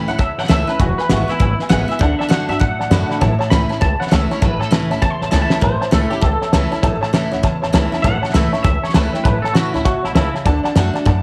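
Rollicking and rowdy, this rockabilly cut from a longer piece charges along at 199 BPM in 4/4 with a swing on the eighths, in A major. A clean, compressed, twangy electric guitar carries the melody high over the band, colored by analog chorus and tape echo, and its lead turns into a solo from 5.6 seconds before it drops out at 10.3 seconds. Underneath, a bright, full-bodied picked steel-string acoustic guitar picks out the accompaniment with audible finger squeak, while a woody, dark pizzicato upright bass anchors the low end. A detuned, jangly honky-tonk upright piano adds vintage color in its upper register and slips in a quick fill around 7.6 seconds. The cloth-damped drum kit sits up front with a fat snare, tight kick, hi-hat and a rolled-off top, punctuating the move into the second half with a fill just before 5.6 seconds, all set in a small room with light reverb.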